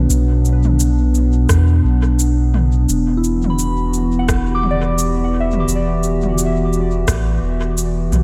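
An excerpt of hazy, meditative ambient dub in E minor opens with a warbling, lo-fi pad holding sustained chords up front, its dark, detuned, nostalgic tone softened by chorus and its own reverb, as a gentle FM synth bell traces arpeggios above it through chorus, phaser and tape echo. Underneath, a round, deep sub bass sits prominently, and from 0.1 seconds an overdriven electronic kit adds cabasa, rim clicks and toms through dub echo. At 86 BPM in 4/4 with a lazy 16th-note swing, the groove moves from Bm to Em7 at 2.9 seconds. A soft, overdriven electronic kick joins in the background at 1.5 seconds and drops out at 7.2 seconds, while the pad, bell and bass carry on to the close. A light reverb wraps the whole mix.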